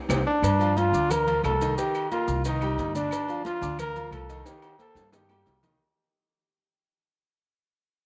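Passionate and fiery, this short salsa cut opens on a band accent and drum fill before a bright, punchy solo trombone with light vibrato and tape echo takes the lead up front, over a clear, vintage concert grand piano comping through Gm7 and Cm7 to Cm11 harmony. A thumpy, dark upright bass with gut strings plucks beneath, while high-tuned congas and claves sit in the background, very quiet cowbell and bongos add tight, high-tuned color, grainy maracas shimmer, and ringing, distant timbales and agogo bells fill out the percussion, with another drum fill arriving at 4.5 seconds. The whole band sits in a moderate plate reverb and fades out from 0.4 seconds.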